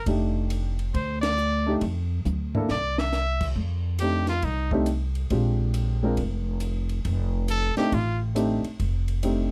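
A brilliant, forceful trumpet leads this playful small-group swing and bop fragment, its present tone colored by light vibrato and scooped notes as it carries the melody from the start to 4.7 seconds and returns briefly near 7.5 seconds. Beneath it, a dark baby grand piano supplies mellow, intimate accompaniment with short sustain and audible action noise, moving through chords such as F13 and Bb13. The upright bass is woody and growly, played pizzicato on steel strings and sitting up front in the mix. A compact cocktail drum kit, smooth with a high-tuned snare, punchy kick and rolled-off top, sits lower in the balance while covering ride, hi-hat, crash and toms, and it adds a fill between 2.3 and 3.1 seconds, following a band accent at 1.2 seconds. The recording is close and detailed with little reverb, giving the whole fragment an immediate, in-the-room sound.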